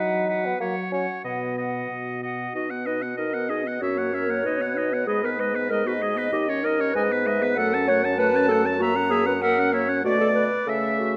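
A cheerful, spirited classical-period movement for wind quintet opens with all five players sounding together, in a quick, straight duple metre. The silver concert flute carries the melody with a pure, crisp-edged tone, vibrato and expressive phrasing, set somewhat distant in the hall, while the bright oboe sings a present second line with light vibrato. Beneath them, the dark clarinet offers smooth-topped accompaniment and sits a touch louder than the others, joined by the mellow French horn filling the middle. The dark bassoon anchors the bass with light vibrato and a roomy, far-off placement. The harmony moves through G#m and F#m before settling on a Bm7 at 10.0 s, and moderate concert hall reverb surrounds the ensemble in this short passage cut from a longer piece.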